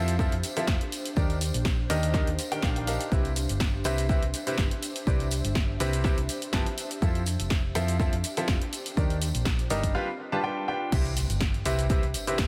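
A steady groove at 123 BPM drives this uplifting, feel-good piano house excerpt in C major, with a gentle swing on the sixteenths and a punchy, overdriven electronic kick anchoring the pulse from 0.2 seconds. An analog drum machine adds a punchy snare, hi-hat, shaker and crash with its own overdrive grit, while a very quiet, distant tambourine sits far back in a large room. A bright, woody upright piano carries the riff up front, its short-sustain chords pumping against the kick and trailing dub echoes, as a round, dark hollow-body electric bass holds down the low end with its own sidechain pulse. Behind them, an ethereal, airy pad with slow attack and long release shimmers through ensemble chorus and built-in reverb, moving through Fmaj7, Ebmaj7 and Cmaj7 before a G7 break at 9.9 seconds. The drop lands on Cmaj7 at 10.9 seconds, and a very quiet electronic impact enters at 11.1 seconds in an echo-heavy mix touched with light digital ambience.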